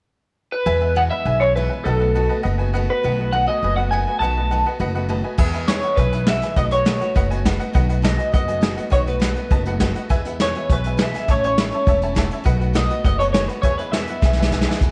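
A small room's light reverb surrounds this rollicking, rowdy rockabilly excerpt, cut from a longer piece, where a twangy, slightly broken-up electric guitar through a small old amp carries the melody up front with phaser and tape echo. A woody, thumpy pizzicato upright bass, a full-bodied picked steel-string acoustic guitar and a jangly, detuned honky-tonk upright piano back it from 0.7 seconds. A vintage kit played with brushes, with dark cymbals and a tight kick, joins at 5.4 seconds, while the piano adds a fill at 11.9 seconds and the drums add one at 14.2 seconds.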